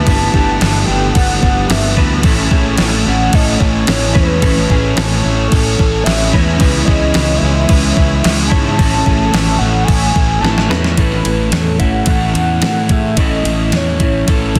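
Shoegaze and dream pop rock at 110 BPM in A major, hazy and wistful, where a mellow, warbling horn-like synth lead with chorus and digital delay carries the melody over a vintage string-machine viola pad that drops out at 11.0 s, quiet direct-recorded guitar arpeggios, a dark background guitar riff with reverse reverb, a crunchy overdriven guitar riff with lush chorus, a round, punchy fuzz bass, and an up-front, thumpy 8-bit drum machine whose fill at 10.4 s leads from the Amaj7 and C#m7 changes into a closing A chord, all in a dense, dry, heavily limited mix.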